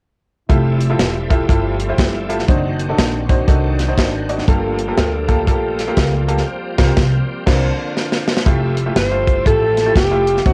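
Uptempo gospel in F major at 120 BPM with a swung 4/4 feel, reverent and uplifting, cut from a longer piece and captured as a home cassette recording with light reverb: a tight, dry funk drum kit up front with bright cymbals plays alongside a woody, thumpy pizzicato upright bass, a brilliant, slightly detuned upright piano comps through Fmaj9, D7b9/F#, Gm9 and suspended C chords, a shouting tonewheel organ sits in the background through a slow rotary speaker, a very quiet French horn section holds sustained chords until 8.5 seconds, the band accents together from 6.5 seconds before a drum fill, and a punchy, forceful alto saxophone enters up front with a jazz-style solo at 9.0 seconds.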